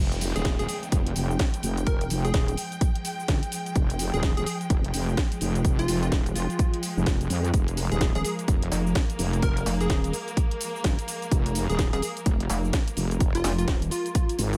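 Gritty and swaggering, this bass house excerpt at 127 BPM in F minor swings its 16ths over an Fmadd9 chord as a heavy, saturated wobble bass with chorus pumps beneath lush bowed strings carrying 12-bit sampler grit, a punchy up-front kick from 0.4 s, a tape-toned house kit with a cracking snare, hi-hat and shaker, a bright, catchy square-wave unison lead with digital delay, an early downlifter ending at 3.8 s, and a second pulsing pluck wobble bass with overdrive joining at 8.2 s, all set in digital ambience.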